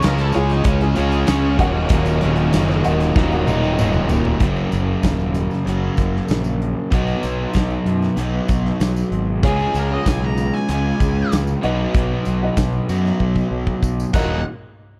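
A swaggering, brooding classic rock excerpt at 96 BPM opens with a full band: two picked, overdriven hollow-body guitars (one up front, the other behind it with spring reverb) drive the riff over a punchy fuzz bass and a big acoustic drum kit with a smooth snare and punchy kick, while a bright, double-tracked stack guitar, a distorted octave-fuzz lead line, a very quiet mellow, woody, slightly detuned upright piano, a faint key-clicking tonewheel organ on a slow rotary, and a jingly tambourine fill out the background. The organ and stack guitar drop away at 4.4 seconds after a drum fill, as the chords move from Db and Ebm to Gb and B. The dark fuzz lead and boxy piano return at 9.4 seconds in a dry, close 1970s-style room sound, and a final fill at 13.2 seconds closes the passage.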